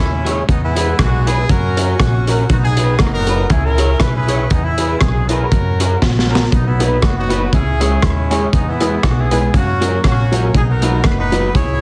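A clear, loose horn section carries the melody with light vibrato and slapback echo over thumpy pizzicato upright bass in this joyful, upbeat ska excerpt at 119 BPM in B major, lightly swung in 4/4, with the chords cycling through E, F#, B and C#m. A crunchy, gritty breakbeat kit with a punchy kick and rolled-off top sits up front alongside a slightly broken-up, lo-fi electric guitar with ensemble chorus in the background, and after a drum fill at 6.0 seconds a dark, mellow upright piano adds short stabs from 6.8 seconds, its action noise audible through tube saturation. The whole mix has light small-room reverb and a heavily compressed radio sound.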